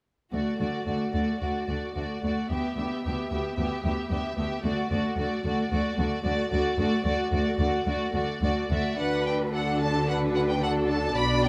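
In a straight 4/4 pulse at 111 BPM, this spirited, cheerful classical-period orchestral movement in D major sets a rich first violin section singing the melody high above an expressive second violin line, soft-edged violas and focused, up-front cellos, all bowed with vibrato over a D to Em7/D harmony, until a clear, intense double bass section joins at 9.0 s as the music turns to a new section, everything framed by close, detailed microphones in a moderate recital hall reverb.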